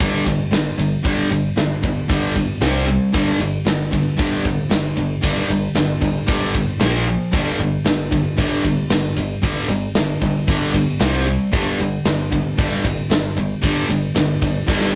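A gated 80s drum kit sits up front with a tight kick, medium-tuned snare, ride cymbal and airy, polished big-room sound, driving this energetic, anthemic hard rock excerpt at 114 BPM, as a crunchy overdriven guitar and a bright cranked stack guitar in the background play riffs over G5, C5 and Bb5 power chords, a punchy, direct picked electric bass holds the low end, and the rough rehearsal-room recording carries saturation and a modest reverb before a drum fill at 14.7 seconds.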